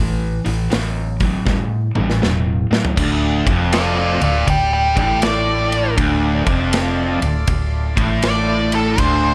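A nasal lead guitar with a parked wah, overdrive and tape echo takes the solo from 3.7 s, riding over a bright, double-tracked fuzz riff in this brooding, smoky cut of blues rock and southern rock at 80 BPM in D minor, with a swung 4/4 feel. Underneath, a dark, foam-muted fingered bass holds the low end while a big studio drum kit with a punchy kick throws a fill ahead of the move to a D minor chord at 3.0 s, where a very quiet, gritty tonewheel organ through a slow rotary speaker adds sustained chords. Light reverb gives the power trio a sense of room.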